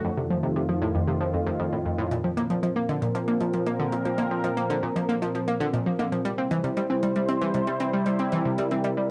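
A straight 4/4 pulse at 116 BPM drives this luminous, expansive piece of ambient, sequencer-driven space music, cut from a longer work, where a round, ring-modulated analog pluck riff and a detuned, resonant sweeping pad of sustained chords sit up front with chorus and cassette-tape color (echo on the pluck, plate reverb on the pad), while metallic electronic hi-hat and woodblock enter in the background at 2.1 seconds as the harmony moves from F7 to Bbsus2 and then to C at 6.3 seconds, all within a wet studio reverb on a home cassette recording.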